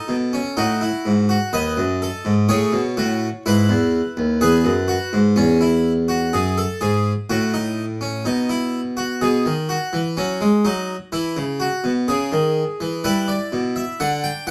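A baroque-style three-part fugue for solo harpsichord, elegant and lively at 62 BPM in 4/4, cut from a longer piece. The French-style instrument is close-miked and up front, its plucked tone full and dry with two sets of strings, set in moderate studio reverb, and it ranges from D#2 to G5 through chords moving from F#m7 to Emaj7, on to B, and closing on Em7 at 13.0 seconds.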